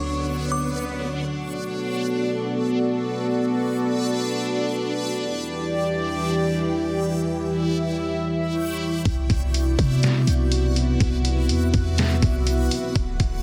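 A dense, heavily limited mix with little reverb opens on a dark, detuned analog pad and a reversed, granular swelling texture, while a brief electronic swell rises and a tinkling FM bell flickers in the background during the opening moments, setting a hazy, melancholic cloud-rap mood over chords moving from Dmaj7 through Bm7 and Em7. At 9.1 seconds, on a Cmaj9#11 chord, a clean, boomy sine 808 bass and a gritty, pitched-down sampler drum kit with a thumpy kick and medium-tuned snare arrive up front in a half-time feel, carrying this fragment of a longer piece to its close.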